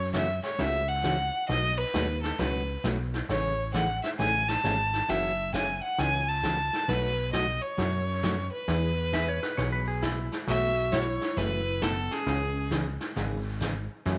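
Light reverb and studio ambience frame this playful, cheerful western swing excerpt, where a clear, focused fiddle with light vibrato carries the melody up front over a punchy, plucky analog bass with a ring-modulated, filter-swept sawtooth edge. A full-bodied picked dreadnought acoustic guitar sits in the background, while a vintage brush kit with a medium-tuned snare and rolled-off top keeps the swung 4/4 moving. A bright, twangy lap steel slides in briefly at 9.1 seconds, and a mellow clarinet with subtone takes the second line from 10.5 seconds as the harmony turns toward B7sus4 and C#madd9.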